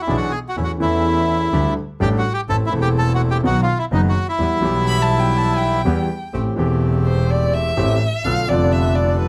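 Passionate and melancholic, this short tango excerpt in E minor moves with a rubato feel around 126 BPM, as an up-front reedy bandoneon sings the melody until 5.8 s over an intimate concert grand piano with audible action noise and deep bass, a background bandoneon adding stabs, and a bowed double bass with vibrato and a focused, smooth top, before a dark, expressive violin enters at 4.9 s with portamento and takes a solo from 6.3 s through chords moving from Am7 to Bm7b5.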